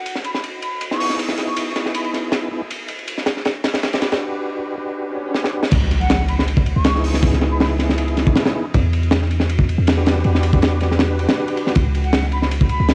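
Raw and atmospheric, this cut from a drum and bass piece with a jungle edge puts gritty, saturated breakbeat drums up front, with a tight kick, high-tuned snare and dark cymbals, beside smooth tonewheel organ stabs that carry chorus vibrato, key click and dub echo under a filter sweep. A pure, expressive concert flute drifts in and out in short vibrato phrases bathed in dub echo, and the home cassette recording adds a light reverb. A background electronic swell and a drum fill lead into the drop at 5.7 seconds, where an impact lands and a deep, boomy 808-style sine bass enters.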